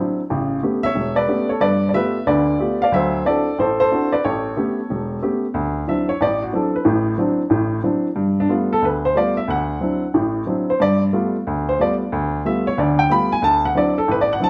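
Swinging and sophisticated, this jazz excerpt moves at a brisk 183 BPM in 4/4, its eighth notes carrying a clear swing feel in D mixolydian. A lone upright piano carries the whole passage from 0.0 to 14.5 seconds, ranging from deep bass notes up into its upper register. Its tone is warm, woody and polished, with short sustain that keeps each note crisp, and it sits up front and present in the mix. The opening section cycles through A9, G9 and D9 chords, and at 5.5 seconds the piano moves into its solo, shifting between D9 and G9 harmonies. A wet stone-room reverb wraps the sound in a live, in-the-room ambience.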